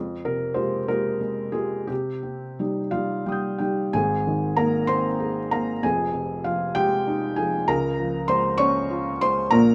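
Swaying in 6/8 with a free, rubato pulse, this neoclassical minimalist piano piece moves at roughly 57-65 BPM counted in dotted quarters. A felt-muted upright piano plays alone for the full 9.7 seconds, its mellow, intimate tone placed up front and ranging from F1 up to G6. The mood is hopeful and tender, set in Ab major with the instrument tuned to A4 = 439 Hz. The harmony drifts from Fmadd9 to Cm, then opens into a new passage at 3.9 seconds that moves through Abadd9, Fm7 and Db. Light reverb adds a soft halo to the sound, and the fragment is cut from a longer piece.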